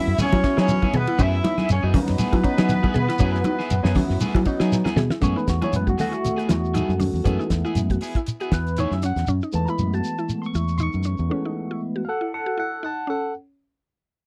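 Driving and funky, this afrobeat passage is cut from a longer piece and swings its sixteenths in a dry, close 1970s-style studio sound. A punchy horn section with octave doubling states the melody from the start, sitting distant and roomy, while a growling, raspy tenor saxophone carries a second line in the background until both drop out at 4.7 seconds. Underneath, a round, up-front fingered bass and a cloth-damped drum kit with a fat snare, tight kick and dark cymbals drive the groove, joined by ringing medium-tuned congas and a grainy shekere. A twangy guitar at the edge of break-up adds stabs through spring reverb, and a woody, mallet-like synth pluck with chorus spins arpeggios over an F#m11 chord. After a drum fill, the barky tine electric piano, lightly overdriven and phased, takes a bright solo from 5.2 seconds to the end, as the other parts thin out around it.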